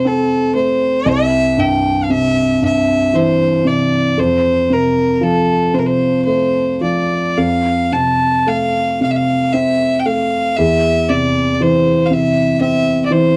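Celtic folk slow air in 3/4 at 57 BPM, played with rubato and uneven beats, carries a longing, haunting mood through this short excerpt cut from a longer piece. A clear, nasal, earthy fiddle bows the melody up front yet with a distant quality, while a felt-muted upright piano supplies soft, mellow, intimate accompaniment in its low register, its vintage action noise audible beneath the chords moving from F to C and back to F before settling on D7sus2/E at 10.6 seconds. The dry, close 1970s-style studio sound, with little reverb and tuning pitched slightly below standard, keeps both players near the listener.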